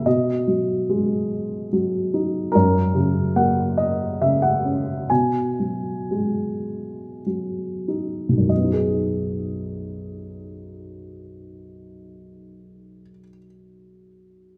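A dark, mellow, woody upright piano sits up front in this tender, lyrical classical solo, drifting in 3/4 with a rubato feel between 48 and 74 BPM in B major (tuned to A4 = 441 Hz), moving through B6 and F# harmonies and slowing from 2.5 to 8.5 seconds before a new section, all wrapped in a moderate recital-hall reverb as this fragment of a longer piece ends at 14.6 seconds.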